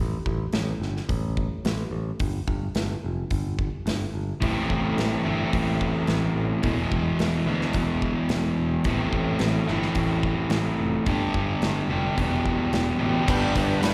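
A bright, growly picked electric bass opens this brooding, gritty classic rock passage in A minor at 108 BPM, joined almost at once by a big rock drum kit with a punchy kick, medium-tuned snare, hi-hat and crash. At 4.4 seconds an up-front crunchy overdriven guitar riff with slapback echo takes over the foreground. At 13.3 seconds the arrangement fills out with a second, background overdriven guitar riff, a woody, boxy old acoustic guitar with plate reverb and slapback echo, very quiet slow-rotary tonewheel organ chords, and a jingly tambourine, all heard as a live gig through the venue's PA in a moderate club reverb.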